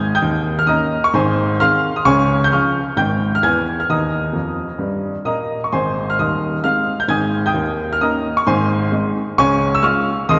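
A baby grand piano plays alone throughout this short stride jazz piece, its tone warm, open and up front, ranging from deep bass notes to bright high ones. The mood is playful and exuberant, with a swung eighth-note lilt in four. A fill on the piano stands out between 4.3 and 5.7 seconds. The chords cycle through dominant and major shapes, repeatedly returning home to Ab. The recording sits in a resonant church-like space with a long, wet reverb tail, and its muted top end gives the sound a soft, rounded sheen. Cut from a longer performance, it lasts about 10.4 seconds.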